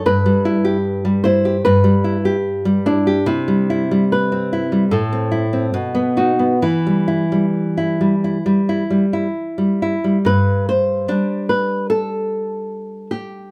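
A fingerpicked flamenco guitar carries the yearning melody in this romantic guitar duo, set up front over a nylon-string guitar whose deep, classical-toned fingerpicked accompaniment sits a little louder beneath it. The elegiac, rubato phrasing moves through minor-key harmony before brightening into a major-key passage at 10.2 s, all in a moderate studio reverb. This short fragment is cut from a longer piece, ending at 13.5 s.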